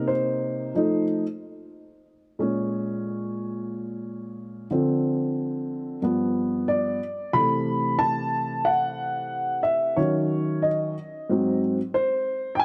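Swung sixteenths at 91 BPM in 4/4 carry this cool, mellow hip hop excerpt, where a dark upright piano plays solo from 0.0 to 12.6 seconds with a woody, boxy tone, audible action noise and long sustain, sitting up front and intimate in a moderate plate reverb as the harmony moves from Cm7 and F7 through Dm7, G7 and C6 to Ebm7 and Ab7.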